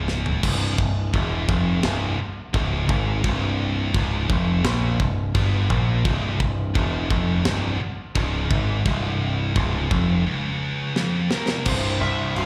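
In this aggressive, relentless heavy metal excerpt, a scooped high-gain guitar with slapback echo and a sludgy, overdriven guitar in the background grind out a low riff over a growling, punchy picked bass up front, as a tight, up-front metal drum kit enters with a fill at 0.1 s and drives on china and crash cymbals, kick, snare and toms before another fill at 11.0 s brings in a bright high-gain lead guitar melody at 11.3 s, the whole performance heard through a venue's PA in recital hall reverb.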